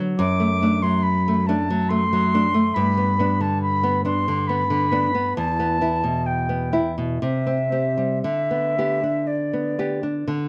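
Light reverb lends a gentle sense of space to this brief, serene romantic duo in G major, moving in an unhurried, rubato 3/4 at roughly 57-71 BPM. A small, dark nylon-string guitar sits up front, fingerpicked as accompaniment from 0.0 seconds through chords including D/F#, G, E5, C and G/D, while an airy, straight-toned concert flute with a soft attack enters at 0.2 seconds from a more distant place, singing a lyrical melody until 10.3 seconds.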